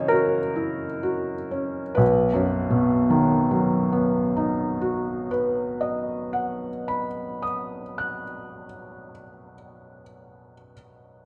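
Classical romantic nocturne for solo felt-muted upright piano, nostalgic and dreamy, moving in a slow rubato 4/4 at 30-35 BPM in B major with tuning at A4 = 436 Hz, where the soft, intimate, up-front piano spans B1 to F#6, slows down over its opening F#7 chord before settling onto B at 2.0 s, and rings through the wet reverb of a recital hall in this cut from a longer piece that ends at 11.3 s.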